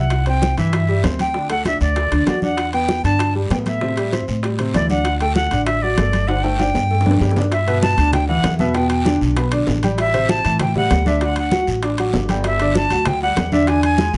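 A brisk, straight salsa groove in 4/4 drives this joyful, danceable clip from a longer piece, with ringing metal-shelled timbales close and dry, damped congas and round, low-tuned bongos sitting further back, and a raspy guiro at the bottom of the mix; a drum fill from 6.3 to 7.5 seconds carries the music into its second half. A woody, thumpy pizzicato upright bass with gut strings anchors the low end up front, while a clear, slightly worn concert grand piano with deep bass and short sustain supplies the chords. Over them a silver concert flute sings the melody in an airy, crisp-edged voice with vibrato and a touch of unsteadiness, bathed in plate reverb within a lightly reverberant room.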